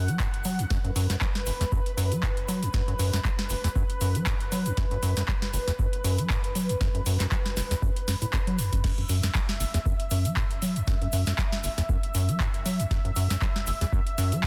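A lush, detuned sawtooth pad and a rubbery acid bass open this raw, trippy acid house excerpt together, both pumping against the sidechain over one held chord. The bass riff sits up front: a dark, resonant square-wave line with a fast-attack filter pluck that decays, saturated further by overdrive, chorus and tape echo. The pad has a slow attack and sustains thick unison chords coloured by chorus and phaser. At 0.1 s a booming analog drum machine brings crisp snare, handclaps, metallic hi-hats and crash cymbal, with a short room on the snare, clap and hats, and at 0.2 s a tape-warm electronic kick arrives. A grainy, bright acoustic egg shaker sits in the background in a small room, and the swung sixteenth feel, light reverb and dense, heavily limited master give the groove its push.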